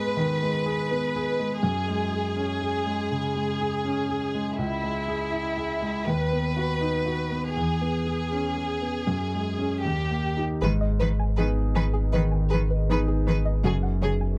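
Closely miked and nearly dry, this melancholic, fragile neoclassical fragment in G# minor drifts at a rubato 81 BPM, with a smooth, vibrato-rich chamber violin section carrying the melody up front over warm vintage grand piano accompaniment, until at 10.6 seconds a focused solo cello adds a second line, a round sub bass settles beneath, and a twangy, string-like resonator pluck with chorus and tape echo sketches arpeggios in the background, joined at 11.9 seconds by a deep, dark, warbling ambient pad holding sustained chords.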